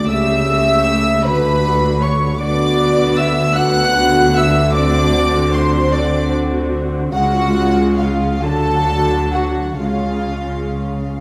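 A rubato 6/8 pulse of 42-53 BPM in dotted quarters carries this slow, melancholic and elegiac romantic movement for string orchestra, where floating, soft-attacked violins carry the melody above a second violin line, dark, woody violas with vibrato supply the accompaniment, and pure sul tasto cellos join lush double basses on the bass, set inside a wet concert-hall reverb.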